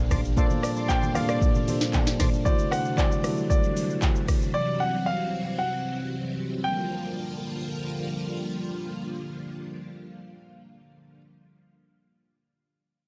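A straight 4/4 amapiano groove opens the clip, driven by an up-front, electronic afro-pop kit with a deep kick, sharp snare, metallic hats, rim click, handclaps and shaker, joined by very quiet, thin-skinned congas that drop out at 2.3 seconds along with the organ. The mood is late-night and soulful, with a lush, vintage string machine holding soft-attack sawtooth chords throughout, colored by phaser, ensemble chorus and sidechain pumping. A clean tine electric piano, heard through its built-in speakers, supplies accompaniment until the drums fall away around 4.5 seconds, while a smooth tonewheel organ adds brief background stabs with chorus vibrato and digital delay. Over the top, a baby grand piano with short sustain carries the melody through digital delay, continuing with the strings to the end. The harmony moves from Bbmaj9 to D9 and settles on Gm7 at 6.6 seconds, and the dark production keeps the sound dry.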